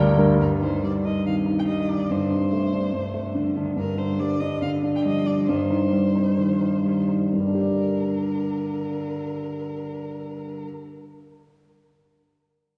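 In a rubato 4/4 pulse that moves between 121 and 145 BPM, this quick classical-period movement for piano trio in G minor feels urgent and restless, and the tempo slows from 2.9 to 7.3 seconds. The grand piano carries the accompaniment up front with a warm, natural tone, spanning a broad register from low bass to the upper middle and sitting well above the strings in level. A single clear violin takes the melody from 0.4 seconds, bowed with vibrato and portamento, and it sounds expressive yet distant. Beneath it, one cello plays a rich, focused second line with vibrato and a smooth top, kept in the background. The harmony moves from C minor over a G bass through open fifths to a G minor arrival at 7.3 seconds, where a new section begins. A long church reverb bathes the trio in a dark production, and the recording is cut from a longer piece.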